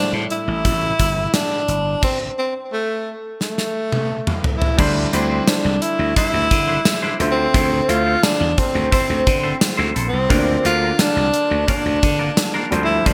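A bright, polished 1980s-style digital production soaked in plate reverb frames this moody, dramatic pop fragment at 87 BPM, where a breathy, whispered tenor saxophone with vibrato and digital delay carries the melody up front over a clear grand piano with subtle chorus and audible action noise. A growly, overdriven slap bass and a punchy gated drum kit with bright cymbals drive the groove, breaking into a stop at 2.0 seconds before a drum fill leads into the next section. At 4.8 seconds a clean, twangy electric guitar with chorus and delay joins in the background with a riff as the harmony moves through Cadd9, Fmaj7/D and Bb.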